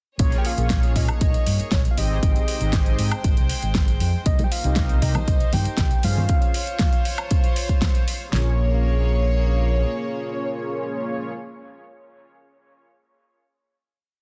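Cosmic and groovy, this short nu-disco piece in Bb dorian moves at 118 BPM in a straight 4/4, opening on a drop where a punchy four-on-the-floor kick and fat snare drive alongside metallic hi-hats, woodblock and a disco backbeat, with softly played background congas appearing from 4.4 to 6.3 seconds. An overdriven, round fingered electric bass plays a funky syncopated line up front, while mellow, detuned synth brass with chorus, tape colour, sidechain pumping and dub echo adds syncopated chord stabs over a floating bowed string pad that also pumps with the sidechain. A soft octave-layered synth lead with chorus and digital delay carries a motif-based melody of call phrases through the Bbm7, Abmaj7, Cm7 and Dbmaj7 changes, and once the drums stop near 8.4 seconds the piece settles on a final Bbm7 chord within a dense, heavily limited modern master.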